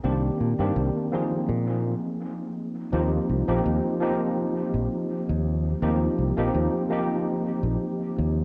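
A worn, slightly out-of-tune tine electric piano, lightly overdriven with analog chorus and tape echo, opens this dreamy, faded vaporwave fragment at 83 BPM in Eb major, joined from the start by a growly, punchy fingered electric bass sitting up front. The harmony drifts from Cm7 to Bb7sus4 before settling on Eb6 at 2.9 seconds, where a new section begins. Light reverb and a digital ambience wrap the short cut in a cassette-tape haze.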